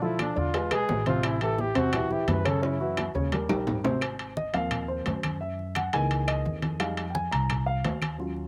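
Recorded outdoors with little reverb, this lively, sophisticated Afro-Cuban jazz fragment at 172 BPM opens with a breathy, mellow trumpet melody with scooped notes up front until 3.1 s, over a dark, intimate baby grand piano with audible action noise, a steel-string pizzicato upright bass, bright low-tuned congas, soft-handed saturated bongos in the background, woody claves with slapback echo and ringing vintage metal-shell timbales, and after a drum fill the music settles into Ab major as the piano takes a solo from 4.0 s.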